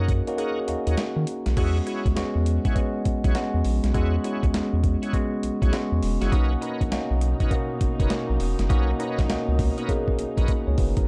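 A clean tine electric piano, colored by phaser and played through a combo amp, opens this slick, bouncy new jack swing excerpt alongside a round, deep analog bass and bright, shouting tonewheel organ stabs. The organ carries light overdrive, key click, chorus vibrato, a slow rotary speaker and digital delay, sitting lower in the mix than the up-front piano. A dusty, sampler-style drum kit joins at 0.1 seconds with a thumpy kick, medium-tuned snare, hi-hat and crash, its compressed, gritty sound placed up front, and a short break follows almost at once. At 101 BPM in 4/4 with a swung sixteenth-note feel, the harmony moves from D#m7 to E6/9 and then to Bmaj9, where a dark, woody string section enters at 6.3 seconds with lush, bowed ensemble chords in the background. A drum fill closes the passage from 9.9 seconds, all within a dark, warm production bathed in digital ambience.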